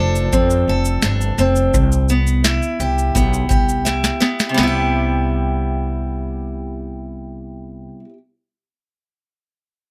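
Carefree and heartfelt, this short acoustic pop excerpt moves at an easy, straight pace in four. A picked acoustic archtop guitar carries the accompaniment up front, its bright, old-stringed tone ringing over chords that move from F6 to Cmaj7. An upright bass, played pizzicato on steel strings, sits close beside it with a growly, woody sound in the low register. A booming analog drum machine supplies a deep kick, a crisp snare and shaker with a tape-warm character, playing a fill from 3.9 seconds before dropping out at 4.7 seconds as the second section begins. Light reverb gives the small group a gentle sense of space.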